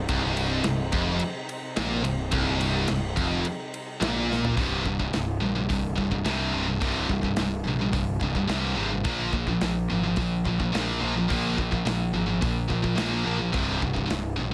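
Lightly reverberant and heavy, this aggressive metal excerpt opens with a very quiet, lush bowed string section holding sustained chords beneath two bright, scooped, high-gain distorted guitars playing a riff (one up front, one in the background), alongside a fuzzy, overdriven picked bass and a small-room acoustic drum kit with a tight kick, whose fill at 4.3 seconds carries the music past the strings' exit at 4.5 seconds into the second section.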